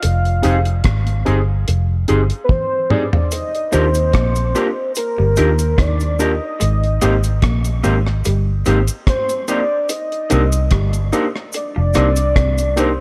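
Smooth and tender, this lovers rock reggae excerpt sets a velvety synth lead with chorus and tape echo over a round, foam-muted bass, a dry, dark drum kit with gated reverb and a fill at 2.5 seconds, a worn, slightly out-of-tune tine electric piano, slightly broken-up guitar stabs, a lo-fi guitar riff entering at 3.7 seconds, and a close, dry cabasa, all moving through Fm7, Ebmaj7, Abmaj7 and Cm7.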